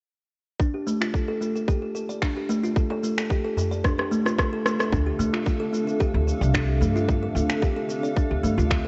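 Worn, warbling cassette tape and a moderate echo chamber wrap this hypnotic, meditative organic downtempo excerpt in D minor at 111 BPM, where an up-front hollow-toned kalimba plays close, dry arpeggios over a tight, overdriven electronic kick and gritty electronic cabasa, finger snaps and rim click, a crisp metal-shell darbuka played with hard hands sounds from 2.9 to 4.1 seconds, a cloudy, detuned granular pad drifts in at 4.4 seconds with sidechain pumping, and a thumpy gut-string pizzicato upright bass arrives at 4.9 seconds.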